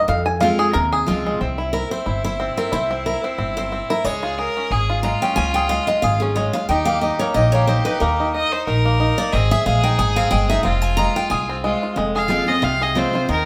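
A twangy, percussive five-string banjo, played with fingerpicks and sitting up front, opens this short cut from a longer bluegrass tune with a brief solo. At 1.4 seconds a steel-string acoustic guitar steps forward for a solo of its own. The mood is lonesome yet driving, at a brisk 182 BPM in 4/4 with a swung eighth-note feel, in F minor. The picked dreadnought guitar sounds full-bodied, while a pizzicato upright bass on gut strings gives a woody, thumpy, dark low end. A bowed fiddle with light vibrato adds an earthy, smooth-topped second line beneath the guitar, then takes over the melody at 12.2 seconds with a clear, focused, somewhat boxy tone. The chords move from Fm through C, Db, Eb and Ab before returning to Fm, and the band plays live in one room, bathed in a lush studio reverb.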